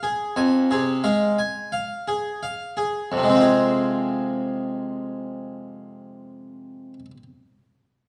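A dark production set in a moderate recital hall, with 1.4 seconds of reverb, frames a single Flemish-style harpsichord placed up front, its plucked tone full and brilliant across three sets of strings. This grave, introspective fragment of a baroque-style suite movement in F minor moves at a rubato 44 BPM in 4/4, opening on an F minor chord and slowing over the first 3.1 seconds before a second section begins. The harpsichord ranges from F2 to Ab5 and falls silent at 7.2 seconds.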